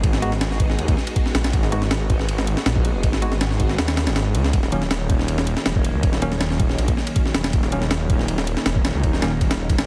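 Frenetic yet atmospheric, this drum and bass and jungle piece runs at 160 BPM in a straight 4/4, sitting in G# minor with a tuning slightly above standard, and it is cut from a longer work. Up front, a sampler-style breakbeat kit drives the music with a thumpy kick, a high-tuned snare and ride cymbal, its compressed, gritty sound set in studio reverb. Equally forward is a thick, menacing detuned saw bass, saturated and beating, holding sustained low notes with a fast attack. Behind them, a silky vintage string machine lays down slow-attack sustained chords treated with ensemble chorus and 12-bit sampler grit, moving from G#m7 to D#m7 at 4.5 seconds. A bell-like tine electric piano adds bright, clean stabs with dub echo from 0.2 to 9.3 seconds, also tucked into the background. The whole mix has light reverb and a heavily compressed, radio-like character with a dulled top end.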